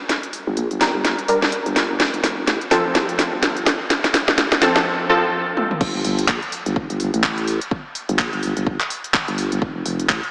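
Bass house at 126 BPM in 4/4 with a swung sixteenth feel, aggressive and bouncy, cut from a longer piece and drenched in a cathedral-sized reverb that gives a dreamy yet small-speaker sound. A garage drum kit sits up front from the start, its cracking snare, crisp hats, handclaps, toms and crash carrying a tape-warm, large-room character through a build-up full of fills. A bold, bright orchestra-hit-like synth stab made of detuned sawtooth unison with a noise layer and ring modulation punches over Gm and F chords, with a filter sweep, built-in reverb, analog delay and sidechain pumping, until it stops at 5.2 seconds. Beneath it a dark, nasal vowel-sweep wobble bass between F1 and C2 resonates through a formant filter, thickened with chorus and overdrive and pumping against the beat. After a short break, the drop lands at 5.8 seconds, where a punchy, layered electronic kick joins the kit and the bass drives on through a chordless stretch before F returns at 9.6 seconds.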